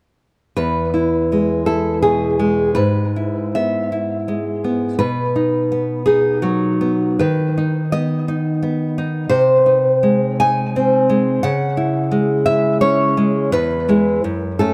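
Nostalgic and sunny, this romantic excerpt for solo classical guitar moves in a rubato 3/4 at roughly 74-88 BPM, beginning in E major and turning toward C# minor from 9.3 s before settling back on E. The fingerpicked nylon-string guitar sits bright and up front from 0.6 to 14.7 s, spanning E2 to G#5, with a touch of tape echo. Close, detailed microphones and light reverb keep the sound intimate.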